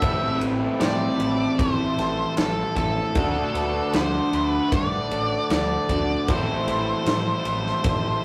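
This cut from a longer shoegaze and dream pop track opens with the full band at once, a wistful, hazy rock groove in a straight four. Up front, an octave-fuzz lead guitar carries the melody through distortion and analog delay, while a warbling vintage analog pad holds soft-edged sustained chords treated with chorus. In the background, a raw overdriven garage guitar and a slightly broken-up guitar through a small old amp play riffs, and a very quiet, clean, compressed twangy guitar adds fingered arpeggios. A growling picked bass with overdrive sits in the low end, and a big, dark, smooth acoustic drum kit with a boomy kick, a medium-tuned snare and ride cymbal keeps the beat. The harmony moves from Am to D at 3.2 seconds and back to Am at 6.3 seconds, set in wet studio reverb and the rough, tube-saturated sound of a rehearsal room.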